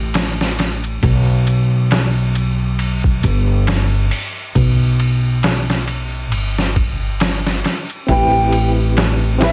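An upright bass opens this hypnotic, cinematic trip hop excerpt at 68 BPM, its woody pizzicato tone sitting up front, joined almost at once by a compressed, pitched-down sampler-style drum kit with a thumpy kick, medium-tuned snare, hi-hat and ride, all swung on the sixteenths under a dry, crackling vinyl haze. The harmony moves from a chordless opening to G, then shifts to Am7 at 8.1 seconds, when a breathy, mellow flute with vibrato and an unsteady, crisp-attacked tone enters alongside a reedy, overdriven electric piano pulsing with tremolo through a combo amp.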